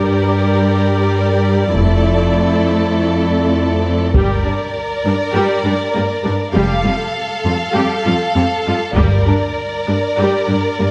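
This cut from a longer piece opens with violins, violas and cellos together: an epic orchestral film score in G dorian at 100 BPM, dark and relentless, building steadily across its length. The violins carry a second line up front with a lush, vibrato-laden sound, while the violas fill in a rich accompaniment and the cellos hold the bass from a more distant position. At 1.8 seconds the double basses join beneath them with a smooth, even tone and light vibrato, staying until 9.3 seconds. A taiko ensemble struck with hard sticks sits in the background of a small room, sounding in two brief bursts from 4.1 seconds and again from 9.0 seconds. The harmony moves from G minor through D minor and F major colours before settling back on G minor, all framed by a moderate scoring-stage reverb and a dark, warm production.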